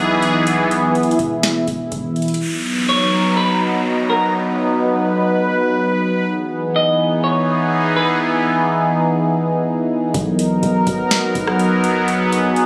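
At 124 BPM in 4/4 with a half-time feel, a deep, sine-like 808-style bass opens with long notes that sit in the background, joined a moment later by a booming analog drum machine with a deep kick, crisp snare, rim click and metallic hats that sets a relaxed pulse. This is a blissful, dreamy stretch of atmospheric cloud-rap, cut from a longer piece, built on a sweeping sawtooth pad that sits up front throughout, detuned and resonant with chorus, sidechain pumping and a filter swell over Emaj7 and Bmaj7 chords. At 2.4 s the drums and bass drop away as an electronic downlifter sweeps through beneath the pad. At 2.9 s a clean, picked semi-hollow electric guitar enters with a short melody, softened by a low-pass filter and trailed by delay. The beat and bass return at 10.1 s to close out the passage beneath the evolving pad. A lush hall reverb and a phone-in-the-room quality, with studio ambience and compression, give the whole piece a hazy, intimate glow.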